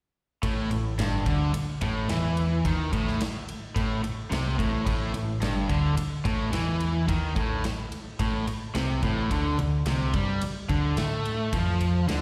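A straight, driving 4/4 groove carries this swaggering classic rock cut from a longer piece, captured live through a venue's PA with recital hall reverb. Two overdriven electric guitars play the riff with slapback echo, a bright, cranked stack up front and a sludgy, dark one in the background, over a round, punchy dub bass and a big acoustic drum kit with a punchy kick, medium-tuned snare and bright ride cymbal. All four parts play from 0.4 to 12.2 seconds, moving from an A5 chord to D5 at 9.3 seconds.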